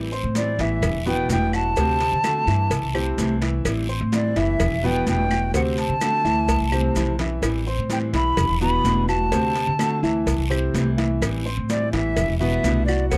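A relaxed, warm Cuban son and guajira groove at 127 BPM opens on fingerpicked nylon-string guitar and a thumpy, up-front pizzicato upright bass, joined within a second by smooth vintage grand piano arpeggios, bright high-tuned congas set back in a large room, and grainy background maracas. An airy, hollow concert flute with vibrato and a crisp attack carries the melody from 0.4 seconds alongside a tight cowbell and raspy guiro, while woody claves enter at 0.8 seconds. The harmony cycles through Am7, Em7, D7 and C6, a drum fill arrives at 6.5 seconds, and the sound is that of a dry, close 1970s-style studio with light reverb, cut from a longer piece.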